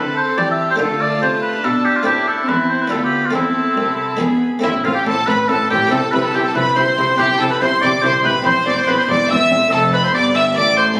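In a straight 3/4 at 142 BPM, this driving, dramatic excerpt from a baroque-style concerto movement in A minor sets an up-front oboe with clear vibrato carrying the melody alongside a violin section of rich, gut-string tone high above, while a second violin section adds a close inner line and a nasal, dark viola section fills out the accompaniment. A muted, lute-like buff-stop harpsichord sits dry in the background, a distant cello section anchors the bass, and a double bass section joins at 4.6 seconds as the harmony moves from A minor toward F. The period-style strings share a reedy sound, most of them with light vibrato, all heard through a phone in a reverberant recital hall with added studio reverb and compression.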